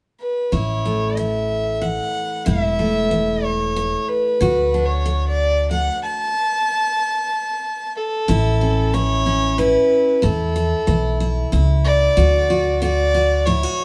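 A nostalgic, heartfelt honky-tonk and classic country waltz at 93 BPM in A major, cut from a longer piece and played live by a small band in one room with a moderate large-studio reverb. A dark, woody bowed fiddle with light vibrato carries the melody from 0.2 seconds, over a bright, full-bodied picked dreadnought acoustic guitar and a thumpy pizzicato upright bass, all up front. The band shifts between A and D chords, and a stop from 6.3 to 8.3 seconds sets off the second section.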